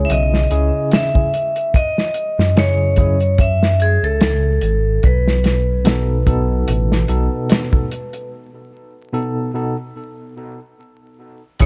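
A lazily swung groove from a small-room soul drum kit with a tight kick and a smooth, rolled-off top, gritty with vintage sampler crunch, carries this smoky, cinematic trip hop excerpt, where a deep, rumbling detuned saw bass sits up front, a clean tine electric piano with tremolo and tape echo moves between C#m and B7, a bright, ringing vibraphone struck with hard mallets carries the melody through dub echo, and a break at 8.3 seconds arrives amid vinyl crackle and a dark studio ambience.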